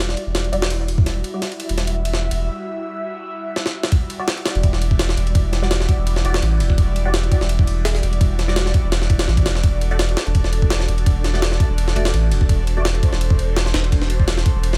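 Frenetic and raw, this drum and bass cut in E minor runs at 168 BPM with a light swing, opening on a build-up where an airy, breathy pad with chorus and phaser holds Em9 over a thick, saturated sub bass, while a filter sweep moves across an analog synth pad and a muted dub chord stab with phaser and dub echo sits in the background. Gritty, pitched-up jungle drums with a thumpy kick, high-tuned snare and ride play fills around a break before the drop at 3.9 seconds, where the compressed, up-front kit and deep sub bass drive the groove and the mellow stabs return at 4.2 seconds. The chords move to D/E at 9.6 seconds, all inside a digital ambience.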